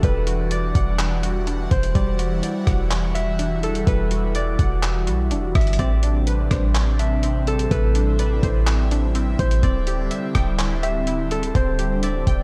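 A deep, boomy 808-style bass sits up front in this hazy, melancholic cloud-rap excerpt, its clean sine tone striking fast and decaying under a half-time feel at 125 BPM in E minor. A muffled, tape-warm lo-fi drum kit with a thumpy kick, handclaps, hi-hat and rim click shares the foreground, sounding compressed and sampler-like. Above them, a fingerpicked concert harp carries the melody with a ringing acoustic tone, trailed by a diffuse ambient delay. An airy, breathy pad holds sustained chords with a slow attack and long release, its detuned noise-tinged texture treated with chorus, phaser and sidechain pumping, while a glassy, crystalline wavetable pluck spins arpeggios in the background through chorus, a filter sweep and a diffuse delay. All five parts play throughout the 12.4 seconds over a light digital reverb as the harmony moves from Em9 to Am11 at 5.8 seconds and D9sus4 at 9.6 seconds.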